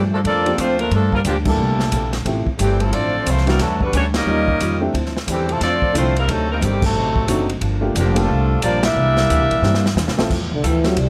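The bright saxophone section carries the melody up front, its smooth top riding over a joyful, energetic big band swing in F major at 179 BPM with a swing feel. Beneath it, a bright, close-miked trombone section with vibrato plays a second line in the background. The woody pizzicato upright bass anchors the harmony, while a swinging big-band drum kit with dark cymbals, a medium-tuned snare and a punchy kick sounds airy and polished. A clear upright piano with audible action noise and short sustain adds accompaniment alongside a very quiet, full-bodied picked steel-string acoustic guitar. Band accents land at 1.4 and 6.8 seconds among others, and a drum fill leads to about 10.5 seconds, when a breathy, dark solo trombone with light vibrato takes the melody up front over brief vintage-toned saxophone section chords, all in light reverb, as this cut from a longer piece closes.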